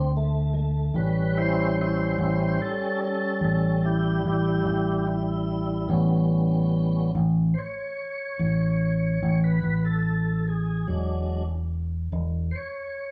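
Gritty and soulful, this slow 12/8 blues fragment in A mixolydian moves at 48 BPM. A full, lightly overdriven tonewheel organ takes the solo spot with sustained chords through a slow rotary speaker and chorus vibrato, over a round, punchy fingered electric bass that sits dark and up front until 12.5 seconds. The chords shift from D7 to A7 to E7, and the band plays live in a stone room with a wet, roomy reverb.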